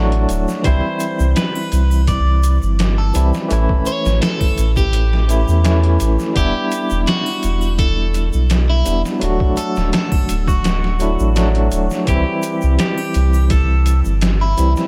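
A deep, round sine sub bass sits up front with tube saturation, anchoring this cinematic, melancholic trip hop excerpt at 84 BPM in 4/4 as the chords move through D, C, A, Em7 and back to D and C. A bright, barky tine electric piano with tremolo, vintage 12-bit sampler grit and tape echo carries the accompaniment, while a slightly broken-up, picked electric guitar with phaser and tape echo plays the melody between E4 and D5. Alongside them, a muffled, pitched-down sampler-style kit with a thumpy kick and overdrive, re-recorded in a small room, is joined from 0.3 s by a ringing tube shaker and triangle in the background, the whole set in light reverb.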